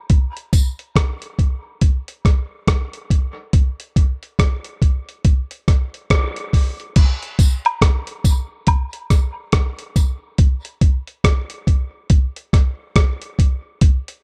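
Spacious and deep, this slow reggae groove at 70 BPM in 4/4 rides on swung sixteenths, cut from a longer piece with a dark production and little reverb. A dusty, sampler-style soul drum kit sits up front from start to finish, compressed and gritty, with a thumpy kick, rim clicks, hi-hat and crash cymbal. Close, dry tambourine and woodblock, with tube shaker and group handclap colours, flick in briefly at 0.5 seconds and return from 7.4 to 10.2 seconds, trailed by dub echo.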